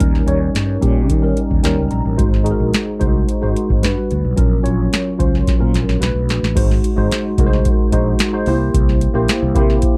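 Dry, close and nearly reverb-free, this nocturnal, urban snippet of polished 1980s jazz-funk pop puts a worn, slightly out-of-tune tine electric piano with ensemble chorus up front, accompanying through shifting seventh chords and adding a fill at 1.4 s, over a round, dark fretless electric bass with subtle chorus and a booming analog drum machine of deep kick, crisp snare and metallic hats that plays a fill from 5.5 s into a new section at 6.6 s.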